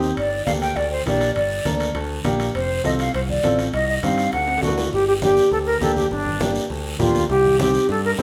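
A band playing live in one room fills a large studio with lush reverb in this fiery, danceable cumbia excerpt, taken at a brisk 202 BPM in straight 4/4 and set in G minor. Up front, a breathy, mellow silver concert flute carries the melody from 0.2 s, its hollow, metallic tone close-miked, tongued and shaded with vibrato. Beneath it, a woody upright piano comps intimately with audible action noise, while a bright, direct picked electric bass anchors the low end and a raspy, saturated guiro scrapes along. Low-tuned congas with a thin skin, played with soft hands, and ringing metal-shell timbales sit in the background of the live room. The harmony moves through Gm, F, Cm and D, and the timbales stop at 4.8 s as a drum fill carries the band into a second section that returns to Gm before touching Cm.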